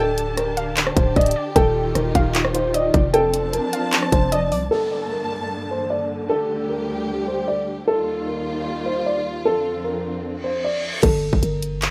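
Up front in this menacing, hard-hitting trap excerpt, an electronic drum kit hits with a hard-clipped kick, bright hi-hats, handclaps, rim clicks and crash cymbal, with a small-room character, over a half-time feel at 152 BPM in G minor. A growling, buzzy 808-style bass with a fast attack and decaying tail sits underneath, while a dark, mellow concert grand piano carries the melody with audible action noise and a boxy, filtered tone. A lo-fi, detuned pluck adds a warbling second line treated with chorus, phaser and digital delay, and a lush, bowed string section holds expressive sustained chords with warm vibrato until 11.0 seconds. At 4.7 seconds the drums, bass and pluck drop away, leaving piano and strings over a downlifter as the chords move from Gmadd9 through Dsus4, Ebadd9 and F6. A reverse cymbal builds to an impact at 11.0 seconds, where the drums and bass return on Gmadd9, all in a dry, rough home demo mix.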